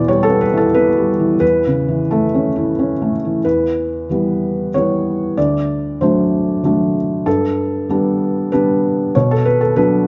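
A felt-muted upright piano plays alone from the first moment, soft and intimate, in a melancholic, wistful neoclassical minimalist piece in E dorian, moving in a rubato 3/4 at roughly 88-97 BPM and spanning D2 to D5. Sitting up front in a moderate recital-hall reverb with a dusky top end, its mellow tone carries chords from Em and A/E into a second passage at 3.4 s that passes through D7, Gadd9 and finally Bm. The fragment, cut from a longer piece, closes at 10.1 s.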